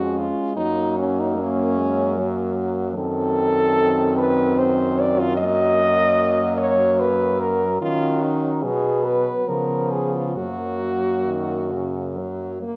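A quartet of French horns opens together in a tender, lyrical classical piece in F# major, moving in a rubato 3/4 at roughly 66-76 BPM. The lead horn carries the melody with a warm, punchy tone and light vibrato, sitting up front, while a mellow, close-miked second horn with vibrato sings a supporting line just beneath it. A third horn, also mellow but distant and roomy, fills in the accompaniment from the background, and a clear-toned horn with light vibrato anchors the bass. The harmony drifts from F# through a diminished seventh and back, then moves through D#m7 and G#m7/B to a C#7 that resolves home to F# at 10.4 seconds. The ensemble sounds through a moderate recital hall reverb, and the whole recording carries the worn, warbling pitch drift of old cassette tape. This short passage, about 12.8 seconds long, is cut from a longer piece.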